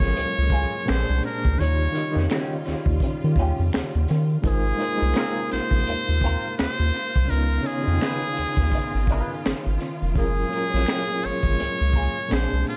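An echo-heavy, small-room mix frames this sensual, soulful neo-soul excerpt at 84 BPM with a swung sixteenth feel, where a buzzy, breathy metal-muted trumpet carries the melody up front with scooped notes and analog delay over a barky, overdriven reed electric piano with fast tremolo, a lush sul tasto string section in the background, a round, deep analog bass, a gritty breakbeat kit with a high-tuned snare and snaps, a distant tube shaker with finger snaps, and a slightly broken-up wah guitar second line entering at 0.2 seconds.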